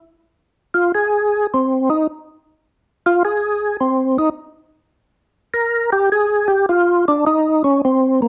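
Soulful and smoky, this short jazz excerpt swings at 104 BPM in 4/4, featuring a percussive tonewheel organ playing solo from 0.7 to 8.3 seconds within the range of Bb3 to Bb4. The organ sounds full and lightly overdriven, with a second-harmonic percussion bite, chorus vibrato and a slow rotary speaker, sitting up front. Close, detailed microphones and a light reverb keep the sound intimate.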